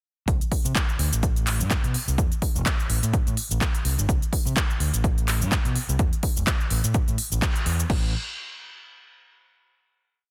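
An overdriven, amped fingered electric bass anchors this short, funky piece of filtered disco house, rolling out a syncopated line from about 0.3 seconds with a sidechain pumping that makes it breathe against the beat. Underneath, an analog-style electronic kick hits four-on-the-floor with a punchy, overdriven edge and a touch of small room ambience. A layered house drum kit fills in crisp closed and open hi-hats, shaker, handclaps on the backbeat and a crash cymbal, its hats, percussion and cymbals also pumping to the sidechain. The whole groove sits in one swung drop, with a band accent at 7.4 seconds before a final note rings out from 7.9 seconds to the end. The sound is dense and heavily limited, wrapped in a digital ambience that keeps the bass and drums up front and grooving.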